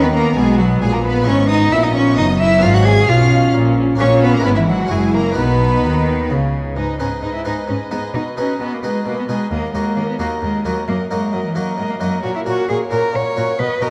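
A dark, moderately reverberant stage sound frames this lively, brilliant baroque-style concerto passage, cut from a longer piece, moving at 132 BPM in 3/4 and turning from B major to G# minor at 6.8 s. A close, focused solo cello carries the melody up front alongside a clear, intense violin section in the background, while a second violin section adds a second line and a rich viola section and bright Italian-style harpsichord fill in the accompaniment. Beneath them, a smooth, distant cello section holds the bass throughout, joined by an expressive double bass section that stops at 6.8 s.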